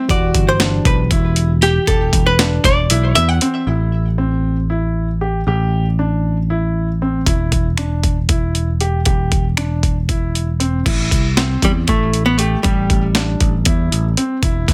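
A dense, heavily limited modern master with light reverb carries this tense, intricate progressive instrumental in 7/8 at 234 BPM in A dorian, cut from a longer piece, where a clean, hollow-body archtop guitar with plate reverb and digital delay solos up front until 3.7 s and returns at 11.6 s, over a growly, punchy picked electric bass, a gritty, overdriven sampler-style drum kit with a thumpy kick, high-tuned snare, hi-hat, finger snaps and crash whose kick and snare drop out at 2.9 s, a clean tine electric piano heard briefly in the background at the start, and a smooth, vintage grand piano with deep bass playing arpeggios through plate reverb, as the chords move from Emadd9 to Am7 and Em.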